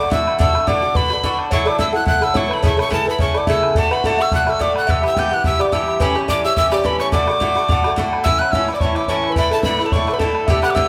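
A breathy wooden whistle carries the melody of this lively Celtic folk reel from the first moment, its tongued notes marked by chiff and a slightly unsteady straight tone, while a mellow tine electric piano plays a clean, direct second line beneath it. A bright, metallic Irish bouzouki sits up front as accompaniment with picked double strings, joined at 0.1 seconds by an open, boomy bodhran, the whole band heard playing live in one room with a large studio reverb. The swung tune moves through a chord progression before shifting into a new section at 8.2 seconds, and the recording is cut from a longer piece.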